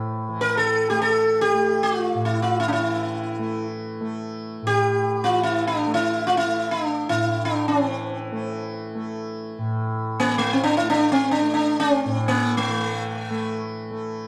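An up-front, bright sitar with buzzing sympathetic strings, slapback echo and plate reverb carries a longing, introspective melody in free time through this Hindustani classical excerpt in A, raga bhairavi, tuned to A4 = 442 Hz, entering at 0.4 s over a softly plucked, warm tanpura drone that shimmers beneath it from 0.0 s to 14.3 s, all set in a small room with a dark production.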